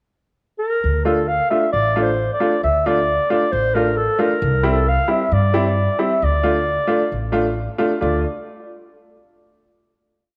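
Bittersweet and soulful, this short klezmer piece moves at 134 BPM in a straight 4/4 and sits in D minor. A dark, distant clarinet opens the piece at 0.6 seconds with a classical-style modal melody laced with ornaments, sounding roomy yet up front as the solo voice. The upright bass enters at 0.8 seconds, plucked and growly on steel strings, playing a two-feel of roots and fifths beneath the tune. From 1.0 seconds a bright, worn upright piano adds off-beat triad chords with a brilliant, slightly detuned, woody tone. The harmony moves from D minor to C and back to D minor before a final chord rings out, all carried in a moderate plate reverb.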